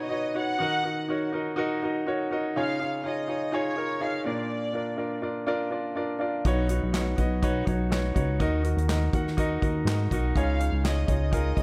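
Piano-driven pop in Eb minor at 123 BPM with a swung sixteenth feel, bittersweet yet driving, cut from a longer piece and set in an echo-heavy mix with light reverb. A clear, polished baby grand carries the accompaniment throughout while a studio violin section with light vibrato and a reedy, gut-string tone states the melody through analog delay, dropping out at 5.2 seconds and returning at 10.4 seconds. At 6.5 seconds a glossy, chorused pulse-wave synth bass and a natural country drum kit with punchy kick, snare, hi-hat and handclaps join, moving through chords such as Badd9, Ebm and Dbadd9.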